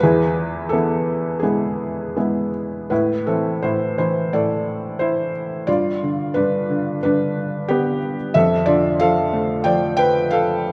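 In a rubato 4/4 that drifts between 78 and 92 BPM, this moody, cool fragment of a lyrical classical solo piano piece in A minor features a felt-muted upright piano, soft and intimate with a thin felt tone, sitting up front as it spans E2 to G5. An opening phrase rests on E before a second passage begins at 2.9 s, moving through Am, G7 at 5.7 s and Dm/F. The piano is wrapped in a moderate, church-like hall reverb.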